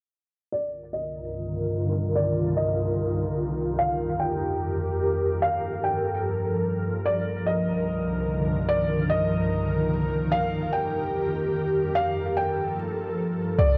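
Spacious and ethereal, this atmospheric cloud-rap excerpt drifts in a half-time feel, cut from a longer piece. A felt-muted upright piano carries the melody from 0.5 seconds, its soft, intimate tone thinned by the felt and marked by audible action noise, with a low-pass filter and analog delay softening it further. From 1.0 seconds an airy pad holds sustained chords beneath it, its detuned unison voices and sub octave given slow attack and long release, then shaded with ensemble chorus, tremolo, built-in reverb, filtering and a cassette tape character. The harmony circles through Cm11, F9sus4 and Gm9 while a filter sweep runs through the passage. A deep, boomy 808-style bass lands up front only at 13.6 seconds, its clean sine tone striking quickly and decaying. The whole sits in a small room with moderate spring reverb, carrying the hazy intimacy of a home recording on cassette.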